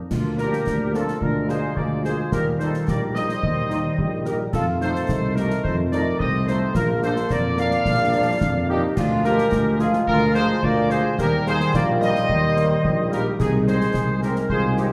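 Heard from further back in a reverberant large room, this spirited, proud military-style march for wind band moves at 108 BPM in 2/4. A vintage-toned trumpet section carries the melody over second lines from a pure flute section, a tight woodwind section and a clear euphonium, with sustained chords from a soft-attack trombone section and accompaniment from a roomy French horn section. An up-front mellow tuba holds the bass beneath close, dry concert snare drum, dark clash cymbals and concert bass drum, and the key shifts from Bb major to Eb major at 9.0 s.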